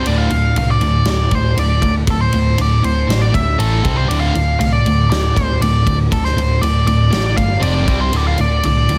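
Dry, heavily squashed radio-style sound with a faint mains hum frames this heavy, menacing hard rock excerpt, where a nasal lead guitar with a parked wah carries the melody over a bright overdriven electric guitar riff and a sludgy distorted guitar riff in the background, underpinned by a growly, punchy overdriven picked bass and a big acoustic drum kit with a punchy kick, medium-tuned snare and ride cymbal that enter at 0.1 seconds.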